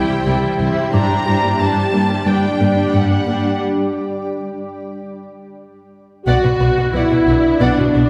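Heard from further back in a reverberant scoring-stage space, this short cut from a longer hybrid orchestral and electronic film cue moves at 90 BPM in a straight 4/4, futuristic and relentless in mood. A cloudy, detuned granular pad with its own reverb sits up front beneath a lush, distant violin melody, smooth viola accompaniment, a close cello bass line and a round, tine-like synth pluck playing arpeggios through chorus, phaser and digital delay in the background, over C and Gm until the melody stops at 3.6 s for a break. At 6.3 s, on Bm, a darker violin second line with expressive portamento enters alongside a mellow, roomy French horn section and a double bass section.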